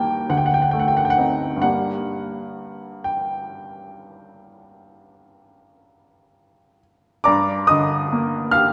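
A clear, woody upright piano sits up front in a wet concert hall reverb, playing a melancholic, wistful romantic nocturne in G minor at a slow, rubato 41-48 BPM in 12/8, its polished, short-sustained notes ranging from D2 to F6 across this brief 8.7-second fragment cut from a longer piece.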